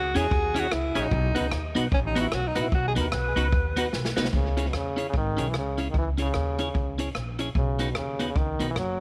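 Energetic and mischievous, this ska excerpt swings with a dry, close sound: a woody, dark pizzicato upright bass and a punchy big-band drum kit with tape echo drive beneath twangy clean electric guitar, also echoed, and fat percussive tonewheel organ stabs turning through a slow rotary speaker. A breathy, whispered tenor saxophone with scooped notes and tape echo takes the opening solo, leading into a drum fill at 3.9 seconds. From 4.3 seconds a bright, up-front trombone with vibrato carries the melody.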